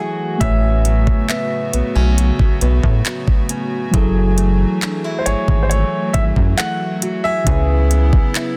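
A straight 4/4 groove at 68 BPM kicks in at 0.4 s, with an electronic R&B kit of knocking kick, metallic hi-hats and handclaps sitting up front beside a rubbery, bouncy square-wave bass. This sensual, longing contemporary R&B excerpt in F# minor moves through A69, F#m9 and C#m7, while an intimate grand piano with audible action noise carries the melody through tape echo. Dark, felt-muted synth keys with chorus, a hollow, flute-like pad, and a boxy fingerpicked steel-string parlour guitar with finger squeak fill out a dry, dense and heavily limited modern mix.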